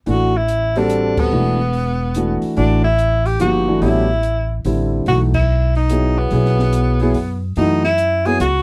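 A dry, close 1970s-style studio sound frames this intense, hypnotic modal jazz excerpt in A dorian at 144 BPM in a swung 3/4, where a breathy tenor saxophone carries the melody with subtone, vibrato and scooped notes over an intimate grand piano with audible action noise and long sustain, a woody pizzicato upright bass on steel strings, and a softer acoustic drum kit with dark cymbals, a high-tuned snare and a boomy kick, while the band hits accents at 1.1 and 5.3 seconds as the harmony moves from A9sus4 to B7sus4 at 5.1 seconds.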